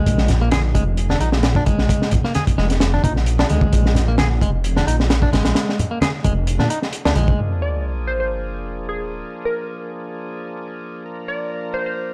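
A thick, menacing detuned saw bass drives this funky, swaggering breakbeat fragment, sitting up front beside a crunchy, saturated drum kit with a punchy kick and high-tuned snare, while low-tuned congas thump in the background and a twangy clean electric guitar riff carries 12-bit sampler grit and dub echo. At 7.4 seconds the groove gives way to an impact and sub drop, and an overdriven tonewheel organ takes over with sustained chords through a slow rotary speaker and sidechain pumping. A glassy, warbling wavetable pluck melody with chorus, AM-radio colouring and dub echo enters at 7.6 seconds, all within a dark, dry production.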